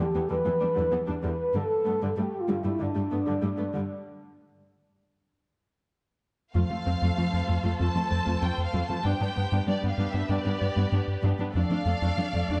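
Heard in a moderate scoring-stage reverb with a softened top end, this cinematic cue at 96 BPM in 4/4 is tense and brooding, cut from a longer piece. It opens with a lush, bowed viola section laying down smooth, even accompaniment, a dark, woody cello section holding the low bass line, and a distant, roomy French horn section up front with warm sustained chords over Em7 and Gsus2. The horns stop at 4.1 seconds, and the music hangs on a chordless break while the strings continue underneath. At 6.5 seconds a symphonic violin section enters with an expressive melody, soft in attack and vibrato-rich, alongside a round, deep analog bass riff with a fast attack and sustained tone. A shadowy studio violin section adds a distant second line just after, as the harmony moves through F, G and Dm/F.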